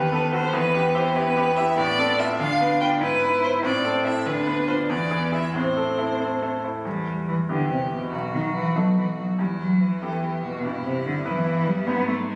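A cut from a longer classical-period movement for piano trio opens with violin, cello and grand piano sounding together in an urgent, restless mood, moving at a quick 96 BPM in a straight 6/8 and tuned slightly high to A4 = 441 Hz. The violin carries the melody with a clear, focused, bowed tone and vibrato, though it sits somewhat distant. The cello plays a rich, smooth-topped second line with vibrato and stands up front alongside the piano. The bright, brilliant grand piano supplies the accompaniment with an intimate, present sound, long sustain and audible action noise. The music begins in A minor and shifts to E minor at 6.9 s, where a new section runs through to 12.4 s. The whole trio is heard through a wet scoring-stage reverb and a club-like room ambience, captured on a phone in the room and compressed.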